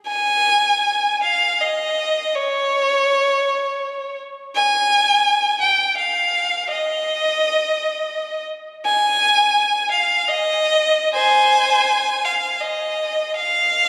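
A rich, focused solo violin opens at 0.1 s and sings alone through 13.9 s in this lyrical, nostalgic classical fragment in Ab major, its bowed, vibrato-laden line with a smooth top sitting up front in a free, rubato 3/4 that drifts between 67 and 88 BPM, captured on a phone in the room with a moderate church reverb and 3.1-second tail plus added club reverb and compression, and cut from a longer piece.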